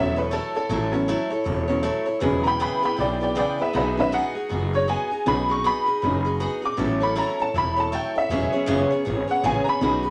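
A jangly, metallic tack piano sits up front and takes a honky-tonk solo through the whole 10.1-second excerpt, its percussive, vintage tone ringing from the middle of the keyboard up into its high treble. Beside it, a picked steel-string acoustic guitar with fresh strings adds a bright, full-bodied jumbo sound, also placed close to the listener as accompaniment. Underneath, a pizzicato upright bass with gut strings gives a woody, thumpy, dark low end. The rock groove swings its eighth notes, giving the music a rollicking, upbeat feel, and the chords move between A6, E6 and B6. A short, wet studio reverb surrounds the trio, and the clip is cut from a longer piece.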